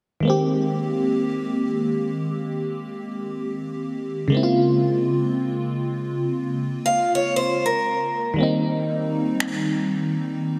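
Soaked in a lush hall reverb, this dreamy, tender slice of slow contemporary R&B at 59 BPM in Ab major, with a swung sixteenth feel, rests on an up-front FM electric piano with a soft pad layer, treated with chorus and phaser, moving through Abmaj7, Bbm7 and Cm7, while a bright, boxy picked steel-string acoustic guitar adds arpeggios with analog delay from 6.9 s and overdriven electronic finger snaps appear briefly at 9.4 s.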